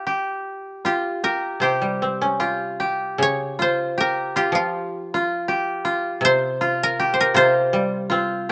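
A moderate spring reverb lends a soft halo to this calm, austere fragment of Japanese traditional chamber music, played by three woody, up-front kotos plucked with fingerpicks. A koto carrying a second line opens alone, the melody koto joins at 0.9 seconds, and an accompanying koto enters at 1.6 seconds, reaching down into the low register. The music flows in a free, rubato two-beat metre as it passes from its opening section into a second at 3.2 seconds.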